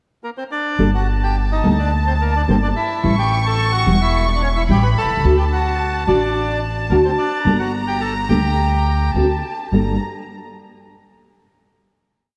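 Dramatic and tense, this short tango in G harmonic minor moves at 108 BPM in 4/4 with a rubato feel, opening on a brief bandoneon pickup at 0.2 seconds before the full ensemble enters at 0.8 seconds and settles on a final Gmadd9 chord at 9.7 seconds. The reedy, bright bandoneon carries a motif-based melody in sentence phrases, partly doubled in octaves and touched with analog delay, while a dark studio violin section adds an intimate, softly bowed counter-melody with light vibrato. Underneath, a full-bodied nylon-string guitar with ensemble chorus plays short thumb-plucked tango chords with audible finger squeak, and an up-front, thumpy pizzicato upright bass on gut strings marks the uneven three-and-two eighth-note tango rhythm, all set in a dreamy mix soaked in lush hall reverb.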